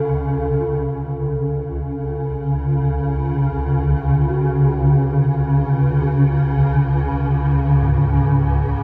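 Dark ambient drone in free time, vast and ominous: a swarming, detuned, granular drone sits up front throughout with built-in reverb and analog chorus, a ringing bronze singing bowl struck with a wooden striker sounds only in the first second, and from 4.3 seconds mellow, round gamelan-type bossed gongs played with padded beaters arpeggiate in the background through delay, with the gongs fading in from 1.0 seconds under light reverb in this cut from a longer piece.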